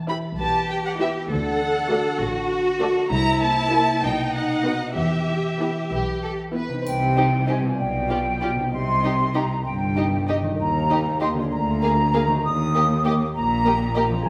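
A lush, wet scoring-stage sound with a 1.6-second reverb frames this playful, whimsical film cue, cut from a longer piece, in a straight 6/8 at 65 BPM, mischievous and quirky as it moves from E minor to C minor at 6.9 s. A dark, expressive violin section carries the melody over a rich second violin line, a warm viola accompaniment, a focused, up-front cello section and a smooth, even double bass section, while a thumb-plucked concert harp rings out arpeggios throughout. At 6.9 s a pure, crisp-attacked flute section steps forward with a second line, and a triangle adds a faint, bright glint in the background until 8.1 s.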